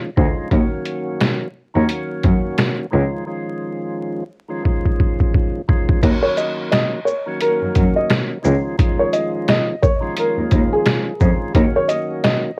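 A swung 87 BPM boom-bap hip-hop groove in Eb minor rides on a gritty, pitched-down, compressed sampler-style drum kit with thumpy kick, medium-tuned snare, hi-hat, shaker and crash, plus a fill at 4.7 seconds, beneath a veiled, bowed con sordino cello bass and a mellow, round tonewheel organ with key click, percussion and slow rotary swirl circling Dbadd9 and Ebm7, while a woody, intimate upright piano with audible action noise and cassette coloring carries the melody from 6.2 seconds, creating a reflective, moody mood in this dry, crackly home cassette recording cut from a longer piece.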